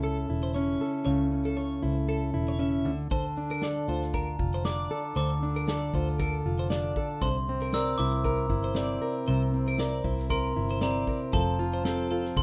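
Set in a moderate studio reverb, this tender, wistful acoustic pop fragment opens with a full-bodied, up-front fingerpicked steel-string acoustic guitar, a bright, twangy twelve-string electric guitar playing arpeggios with a warbly pitch drift, and a dark, round, foam-muted electric bass, before a sparkling, close-miked glockenspiel second line and a natural small-room drum kit with a punchy kick, shaker and snare arrive at 3.1 seconds over a lightly swung sixteenth-note feel.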